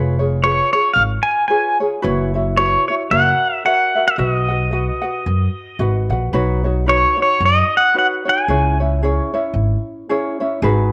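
Languid and dreamy, this short Hawaiian excerpt in B major drifts along at 112 BPM with a gentle swing on the eighth notes. A bright, light ukulele, thumb-plucked, and a woody pizzicato upright bass on steel strings carry the accompaniment throughout, while an electric pedal steel guitar, clean and compressed, takes the melody from 0.4 to 8.8 seconds with fingerpicks, slide and volume swells, its lines wrapped in slapback echo. Moderate spring reverb and small-room ambience hold the up-front parts together as the chords move from C#7/E# through F#7 to B and on to C#m.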